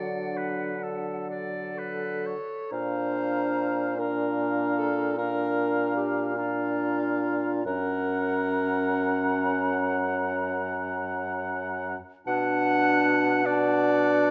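A hollow, pure-toned silver flute carries the melody with vibrato and a crisp attack, sounding slightly distant, while the oboe sings a soft-edged second line, joined by the clarinet and a present French horn in the accompaniment, with a mellow, roomy bassoon on the bass. This lyrical, warm slow romantic movement for wind quintet, cut from a longer piece, moves in a rubato 12/8 at roughly 41-53 BPM in dotted quarters, its harmony shifting from D to Bb at 2.7 seconds, then on to Gb and Bm7. Light reverb and close, detailed microphones give the classical-style playing an intimate clarity.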